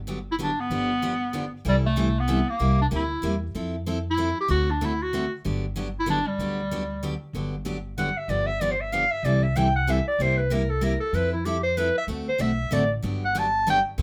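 A moderate club reverb gives this short cut from a longer piece a lively, roomy sound. It is acoustic string swing in the jazz manouche style, swinging and playful at a brisk 190 BPM in 3/4 and in G major, with its harmony moving through chords such as Gmaj7, C6, Fmaj7 and D7. The upright bass is plucked on gut strings, with a woody, thumpy tone. The picked steel-string jumbo guitar sits up front as a full-bodied, warm accompaniment, and its finger squeak can be heard. Over them a bright, forceful clarinet carries the melody with vibrato and a punchy jazz attack, sounding louder than the other two parts. From 7.3 seconds the second section begins, and the clarinet plays a solo through to the close.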